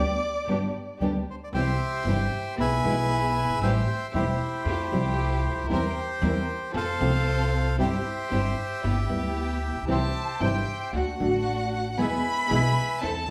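Set in a lush, reverberant studio room with the band playing live together, this elegant, nostalgic tango excerpt moves at 115 BPM in C major with a rubato feel. A bowed violin with vibrato and portamento takes a brief solo at the start before the reedy, close-miked bandoneon enters at 1.3 seconds to carry the melody up front. Beneath it, a growly pizzicato upright bass, fingerpicked nylon-string guitar with audible finger squeak and dark, expressive string-section stabs support the tune, and the violin returns as a second line at 9.9 seconds.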